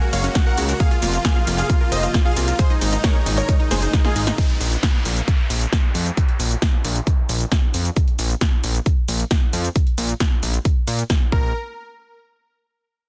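Soaring and emotional, this uplifting trance excerpt at 134 BPM in Bb minor opens on a drop. Huge, bright supersaw chords carry the melody with sidechain pumping and delay, shadowed by a very quiet, boxy concert grand piano, a lush slow-attack supersaw pad, and a detuned unison pluck tracing arpeggios in the background with a cassette-tape tint, until a drum fill at 3.7 seconds. From 4.4 seconds these upper layers fall silent, leaving a fat, saturated sawtooth bass with a filter sweep, an overdriven analog drum machine of hi-hat, ride, shaker and punchy snare, a layered, up-front electronic kick and an electronic downlifter, until the supersaw chords briefly return at 11.3 seconds, all set in digital ambience within a dense, heavily limited master.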